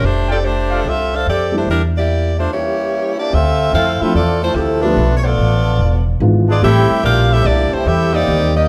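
Big band swing with a swinging, brassy mood, heard in a short cut from a longer piece. A bright, close-miked saxophone section carries the melody up front with vibrato and tight section playing, over a woody, pizzicato upright bass that sits just as close. A trumpet section with a smooth top adds brief stabs from the background at 0.3 seconds, and a dark, mellow baby grand piano joins at 1.5 seconds with intimate accompaniment and audible action noise. As a brief stop hits the band at 2.5 seconds, a clear trombone section enters with a second line, sounding distant and roomy with light vibrato. The ensemble is heard from further back in a large studio with moderate reverb, and the harmony moves through rich minor and diminished jazz chords.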